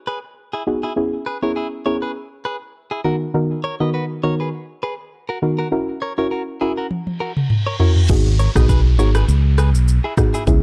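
A dry, gritty cassette-tape sound frames this joyful, breezy afrobeats excerpt at 101 BPM, where a bright, clean direct electric guitar riff with analog delay and a soft, round chorused pluck move through G#m7, C#m7, Bmaj7/D# and F#7 before a deep-kicked electronic drum kit fills in at 6.9 seconds, a reverse cymbal and downlifter sweep in beneath it, and a growly, punchy fingered bass arrives up front at 8.1 seconds.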